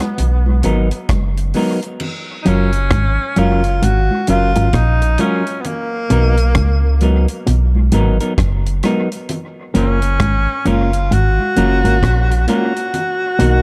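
Roots reggae in F# major at a relaxed 66 BPM, this uplifting, sunny excerpt rides a swung sixteenth-note feel over chords moving between Bmaj7 and F#maj7. A breathy, whispered tenor saxophone carries the melody from the start, its soft attack, vibrato and scooped notes giving an intimate, pop-style solo voice, with tape echo trailing its phrases. Beneath it, a deep reggae drum kit with a tight kick, crash cymbal, hi-hat and rim click sounds dry and rolled-off on top, sent through dub echo, while vintage, ringing congas played with soft hands sit in the background. A round, sine-like sub bass enters at 0.2 seconds and stays up front with a fast attack and sustained notes, and a clean, hollow-body semi-hollow guitar joins at 0.6 seconds with fingered accompaniment colored by tape echo. At 2.5 seconds, shortly after the music moves into its second section, a dark, compressed guitar through an envelope filter slips in beneath the mix with a low riff. 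The production is dark and warm, framed by light studio reverb.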